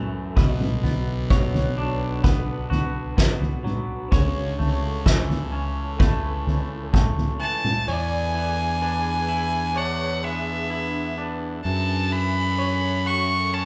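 A cinematic, soaring post-rock excerpt in a straight 4/4, played by a band live in one room, with a glassy, ethereal FM pad holding sustained chords in the background through chorus and phaser while a twangy, scooped clean guitar and a lo-fi, slightly broken-up guitar with tremolo play arpeggios over a fuzzy, overdriven fingered bass up front. A roomy soft-mallet drum kit with a fat snare and punchy kick plays from 0.4 to 7.9 seconds, and a close, biting violin with light vibrato and slapback echo carries the melody from 7.4 seconds as the chords move from Bm and A/C# to E7 and F#m7.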